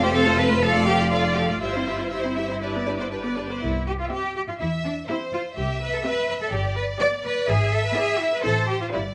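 A moderate large-studio reverb surrounds this short excerpt from a quick classical-period movement for string orchestra, with a cheerful, graceful mood at 123 BPM in 4/4, played with rubato in C major. The violins carry the focused, distant melody over a second violin line with a smooth top, while the violas add expressive accompaniment with portamento. The close, up-front cellos and soft-attack double basses anchor the bass as the harmony moves from F through G and C before settling on A minor at 8.4 seconds.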